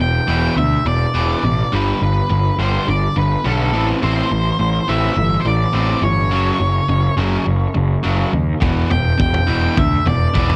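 Indie rock in E minor at 104 BPM in a straight 4/4, this short cut from a longer piece carries a bittersweet, cool mood. A biting overdriven guitar sits up front with a picked riff, joined by a bright, punchy fuzz bass played with a pick that drives the low end from the start. Above them, an octave-fuzz lead guitar with distortion and analog delay carries the melody in a warm, fuzzy tone. The chords move from Em7 through G and Am to a stark F#5 before returning to Em7 at 8.6 seconds, the moment a vintage drum kit arrives with kick drum and toms, its punchy kick and rolled-off top colored by cassette tape. Light reverb and the home cassette recording shape the overall sound.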